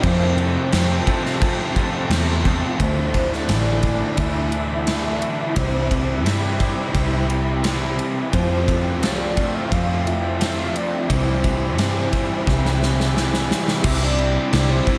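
Shoegaze and dream pop rock at 87 BPM in C major, this blissful, hazy excerpt floats in a mix soaked in a huge ambient reverb. A crunchy overdriven guitar sits up front with its riff trailing into reverse reverb, while a raw garage guitar grinds out a lo-fi, overdriven riff with subtle chorus further back. Underneath, an electric guitar through a small old amp picks very quiet, compressed, slightly broken-up arpeggios, and a soft octave-layered synth lead carries a round, full-bodied melody with sub-octave depth, vibrato, chorus, phaser and tape echo from the background. A vintage muted fingered bass adds a dark, punchy low end, and a gated 80s drum kit drives things with a tight kick, medium-tuned snare and bright cymbals in an airy stone room, capped by a fill from 12.5 to 13.8 seconds. The chords drift from Fmaj7 through Dsus2, C, Fadd9 and Cadd9 before settling back on C.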